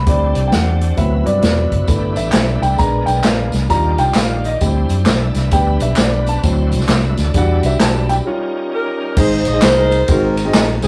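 Reverent yet jubilant, this short uptempo gospel cut swings at 132 BPM in 4/4, captured with the rough, saturated character of a rehearsal room and a moderate studio reverb. A woody, intimate upright piano leads the way as a solo through the opening passage, its action noise audible and its notes ringing with long sustain, while a round, amped fingered electric bass and a swinging big-band drum kit with dark cymbals and a punchy kick sit up front beneath it. A bright tonewheel organ adds full, shouting sustained chords, lightly overdriven and colored by chorus vibrato and a slow rotary speaker, until it drops out at 9.2 seconds. Tambourine, egg shaker and group handclaps with a band-limited, vintage tone join at 1.9 seconds, and after a break the harmony moves from a G-centered progression toward Ab and Ab7. At 8.7 seconds a smooth saxophone section enters with the melody, its jazz-style vibrato giving the closing bars a rich ensemble lift before the cut ends.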